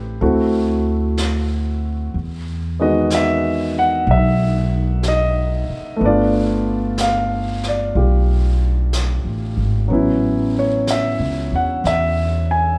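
Smoky and melancholic, this slow jazz ballad at 62 BPM swings gently in 4/4 through rich extended chords, moving from D9 and Emaj9 to G9 before settling on A6. A concert grand piano with deep bass sits up front and plays the accompaniment alongside a woody, growly pizzicato upright bass on steel strings, both present from the start. A distant, roomy brush kit of snare and hi-hat joins at 0.2 seconds, all under light reverb in this short cut from a longer piece.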